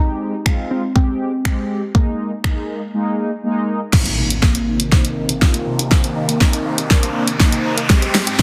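Driving and bittersweet, this dance-pop clip in C minor moves at 121 BPM. A soft, round pluck melody with chorus and tape echo rides over dark, brassy synth brass that pumps against an up-front pop drum kit with a punchy kick, a fat snare, finger snaps and crash, until the melody stops at 3.4 seconds and a brief pause follows. At 3.9 seconds a build-up begins with a drum fill and a filter sweep, as a lush, airy unison pad in the background and very quiet, short-decaying unison-pluck arpeggios enter, while an electronic riser and impact push the dense, heavily limited mix over Cm7 and Abmaj7 chords.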